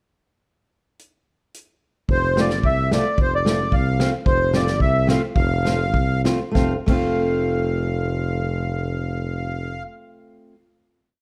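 The reedy, sweet accordion leads this short, jolly alpine folk dance piece, playing a smooth, motif-based melody in balanced phrases with a light tremolo tuning and a slapback echo. The drum kit opens alone at 1.0 s with a pickup bar, its bright cymbals, medium-tuned snare and punchy kick setting up a bouncy oompah groove in 2/4. At 2.1 s the accordion and a mellow, up-front tuba arrive on an F major chord, the tuba marking root and fifth on the main beats in a classical style. A fingerpicked steel-string acoustic guitar joins just after, adding off-beat triad chords with a dark, auditorium-like tone. The tempo sits between 95 and 111 BPM and slows from 4.3 s before the piece settles on a final chord at 6.6 s. The production is dark and warm with light reverb.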